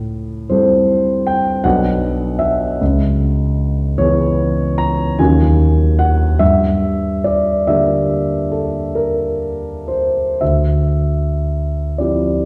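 A warm, up-front concert grand piano plays alone in this brief, mysterious and hazy impressionist classical passage, moving in a rubato 9/8 at a slow 37-54 BPM in dotted quarters, its deep bass and natural tone ringing through a wet recital-hall reverb as the harmony drifts from Am7 through Bm7, C#m7, Ebm7 and Gm6 before settling on Dm11 at 10.4 seconds.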